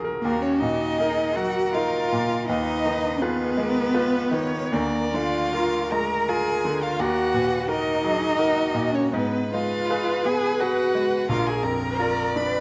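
Classical slow romantic movement for piano quartet in a yearning, elegiac 3/4 with uneven rubato beats, cut from a longer piece, where a bright, brilliant, up-front grand piano with short sustain accompanies from 0.0 seconds before a distant violin with vibrato carries the melody from 0.2 seconds, while a close, focused second violin and an expressive cello with portamento and warm vibrato carry second lines through a moderate scoring stage reverb captured by detailed close microphones.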